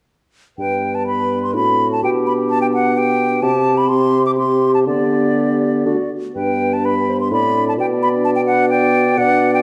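Cheerful and spirited, this quick classical-period excerpt for symphony orchestra moves in a lilting 3/4 around 119-130 BPM in G major, its rubato giving the phrases an elastic push and pull over progressions like G, D7/A and Am7/C. From 0.6 seconds an airy silver concert flute with soft-edged vibrato sits up front on a second line alongside a clear clarinet in a lower register, while a dusky bassoon, also forward in the balance, provides accompaniment beneath a French horn section holding smooth, sustained chords. A wet recital hall reverb with a 1.7-second tail surrounds the ensemble in a mellow, shadowed production.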